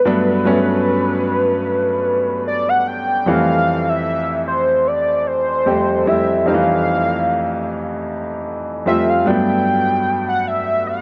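At 75 BPM in 4/4, with a slight swing on the sixteenth notes, this short R&B passage from a longer piece in F major sets a romantic, dreamy mood. A velvety, full-bodied synth lead carries the melody between B4 and G5. It blends sawtooth and triangle tones in unison, and its fast attack gives way to sustained notes with vibrato, thickened by chorus and delay. Beneath it, a clear, polished grand piano supplies the accompaniment from F2 up to G4, sitting up front alongside the lead for the full 11 seconds. The harmony opens on Gmaj9, moves to Fmaj9 at 3.3 seconds as a new section begins, and returns to Gmaj9 at 9.3 seconds. Light reverb lends the whole a small-room ambience.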